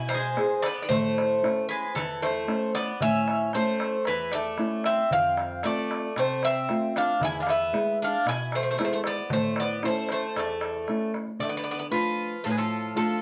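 A bright, metallic Greek bouzouki leads this bittersweet, moody excerpt of Greek folk at 114 BPM in 4/4, its picked double strings with some octave-doubled courses sitting up front over a second, mellower bouzouki line in the lower register. A small, thumb-plucked nylon-string guitar, also up front, supplies the accompaniment, while a clay-shell darbuka played with soft hands adds a vintage, band-limited patter until 11.3 s. The band plays live together in one room with a wet studio reverb, moving through E, A and F chords before turning to D minor at 11.4 s.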